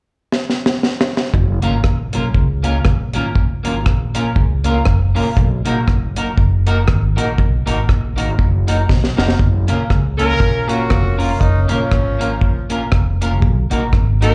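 A swung 4/4 ska groove opens with a fill on a dark, dry reggae drum kit, its tight kick, high-tuned snare, rim clicks and hi-hat sitting up front, before a woody pizzicato upright bass joins at 1.3 seconds and a clean, picked electric guitar adds major-seventh chords colored by lush chorus and slapback echo. After another drum fill, a present horn section with light vibrato carries the cheerful, joyful melody from 10.2 seconds, touched by slapback echo of its own. This fragment of a longer piece sounds like a live club gig heard through the venue's PA, wrapped in small-room reverb.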